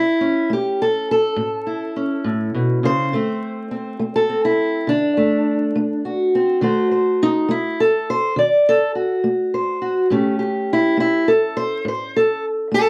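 Rollicking and swaggering, this short cut from a longer acoustic country blues piece rolls along at 69 BPM in a straight 12/8 feel in A mixolydian, a lone fingerpicked steel-string parlour guitar, dark, boxy and up front, moving through A, D7, D#dim7 and A7 over 12.9 seconds in a dry, close 1970s-style studio sound with light reverb and vinyl crackle.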